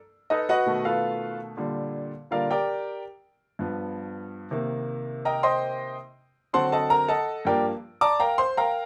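A clear baby grand piano plays alone in this short jazz passage, cut from a longer piece, sounding intimate and up front with its action noise plainly audible. The mood is fiery and sophisticated, set in G minor at a brisk 163 BPM in a straight 4/4. The piano enters at 0.3 seconds and ranges from G2 up to D6, moving through rich harmony that opens on B7#11 and passes through Bb6, G7, Cm7 and D7b9 before settling on Gm9 at 7.5 seconds. A moderate club reverb gives the natural tone a modest sense of room, and the passage runs to 8.9 seconds.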